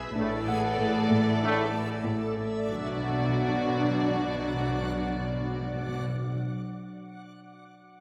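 A straight 4/4 pulse at 95 BPM carries this ominous, uneasy passage of suspense film score in B minor, cut from a longer piece and moving from Asus4 to Bm. Floating violin sections play a distant melody and a soft second line over a woody, lush viola accompaniment, while a reversed, detuned granular texture holds dreamy chords alongside a very quiet mellow horn section and a bright trombone section in the background. Low cellos play a riff and bass line with the double basses, a dark piano texture sounds until 2.7 seconds, and round, up-front timpani on calf heads enter at 2.7 seconds, all bathed in a wet scoring stage reverb.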